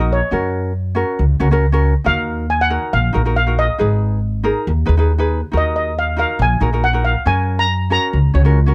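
Close, detailed microphones and very little reverb give this short calypso cut an intimate, dry presence, with every part sounding near at hand. A steel pan carries the melody in its upper-middle register, its shimmering, metallic tone softened by rubber sticks on a double seconds pan into something mellow and gentle that sits up front. Beneath it, a fingerpicked acoustic ukulele adds light, lightly plucked accompaniment, while a pizzicato upright bass with steel strings supplies a woody, dark low end that is also placed prominently in the mix. The harmony moves from F# through D#madd9 and G#madd9 to D#m before settling back on F# at 7.3 seconds, keeping the straight, bouncy groove sunny throughout. All three instruments play together from the opening moment, with the pan dropping out at 8.5 seconds just before the fragment ends.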